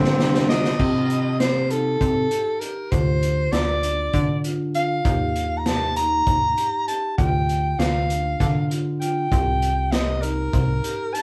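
Set in a moderately reverberant studio room where the band plays live together, this brooding, intricate progressive instrumental moves in 7/8 at 197 BPM (eighths) in C dorian. It opens on a drum fill from a crunchy, gritty breakbeat kit with dark cymbals, accompanied briefly by a breathy, whispered alto saxophone and a lightly overdriven tonewheel organ turning slowly through its rotary speaker in the background, both gone by 0.8 seconds. The punchy, funky analog bass plucks up front, a mellow marimba with soft mallets runs woody arpeggios, and from 0.5 seconds a soprano saxophone takes the solo melody with vibrato and scooped notes over chords moving from Cm through Dm7, Eb and Dm to Cm7.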